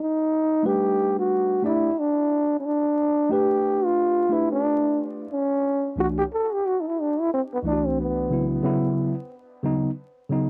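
This hip hop excerpt moves at 90 BPM in 4/4 with a swung sixteenth-note feel and a nocturnal, cool mood, tuned slightly sharp to A4 = 443 Hz. A growling trombone carries the jazz-style solo melody up front, its raspy, breathy tone colored by scooped notes and a tape echo. From 0.6 seconds a worn, slightly out-of-tune tine electric piano supplies mellow, direct accompaniment over a G to C progression. After the trombone drops out at 8.5 seconds, the piano carries on by itself through F#5 and B chords until 10.5 seconds. Both parts carry a cassette tape character, and the whole home recording sits in light reverb with a bed of vinyl crackle.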